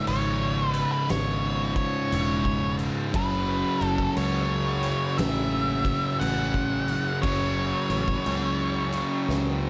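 A slow, swung 4/4 crawl at 59 BPM drives this heavy, sludgy stoner and doom metal excerpt, moving from C#m to F#m around 3.1 seconds in a light reverb. An oversized, low-tuned acoustic kit with a punchy kick, fat snare and dark crash booms in a pumping big room, while an up-front, double-tracked fuzz guitar grinds out a bright, compressed low riff over a growly, foam-muted picked bass with overdrive. Above them a dusky octave-fuzz lead guitar carries the melody through slapback echo, and the drums close with a fill at 9.3 seconds.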